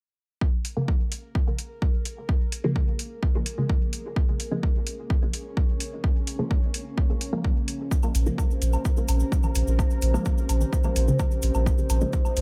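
Dub techno at 128 BPM in 4/4, this meditative, hypnotic cut from a longer piece sits on a single Bbm7 chord in Bb dorian, tuned slightly low at A4 = 438 Hz. A punchy, overdriven electronic kick drives it up front, with metallic, tape-warm hi-hats and a muted, detuned sawtooth dub chord stab carrying phaser, 12-bit sampler grit, sidechain pumping and dub echo while a filter sweep runs across it. Alongside them a moody, wave-folded analog pad holds sustained chords with subtle chorus and pumping, and a bright, resonant stepped-filter texture bubbles in the background. Around 8.0 seconds the groove thickens as a grainy acoustic cabasa and overdriven woodblock and congas with dub echo join, followed at 8.1 seconds by a round, deep sine sub bass on Bb1. Light digital ambience surrounds the whole.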